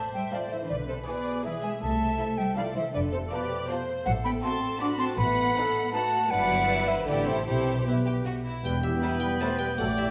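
A mischievous, magical cinematic piece in 3/4 opens on a lush violin section carrying the melody over a second, more distant violin line, with a pure flute counter-line, vibrato violas, ringing thumb-plucked harp arpeggios and a dark, woody cello bass, joined at 0.7 s by a double bass section gliding with portamento. At 8.6 s the music turns a corner as a warm clarinet and a close-miked cor anglais add second lines and a mellow French horn section holds sustained chords in the background. A brilliant, dry harpsichord takes up the melody at 8.7 s, and the orchestra sits in a wet scoring-stage reverb in this fragment cut from a longer piece.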